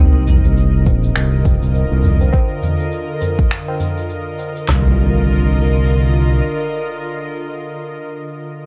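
A dry, gritty digital ambience frames this brief, earthy organic downtempo excerpt in a swung 4/4, where a tense, bright string-like drone holds a Cm11 chord with reverb and sidechain pumping over a dark, detuned gliding synth bass, a background sub drop and impact, low-tuned saturated tabla, and two tape-warm electronic kits of finger snaps, shaker, toms, handclaps, soft kick and woody snare that drop out around 4.8 seconds.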